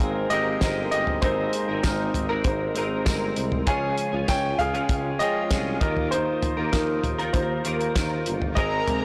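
Warm and hopeful, this short cut from a piano-driven pop piece in a straight 4/4 features a clear, intimate grand piano with audible action noise carrying a solo over a chorused, cleanly picked direct electric guitar riff, a tuba bass with light vibrato, a dry, damped 70s drum kit with a fat snare and tight kick, and a jingly tambourine in the background from 0.6 to 8.1 seconds, all moving through Abadd9, Db and Ebsus2 in a small, lightly reverberant room on a blown-out, overdriven recording, until a dark bowed violin section with portamento slides in at 8.6 seconds.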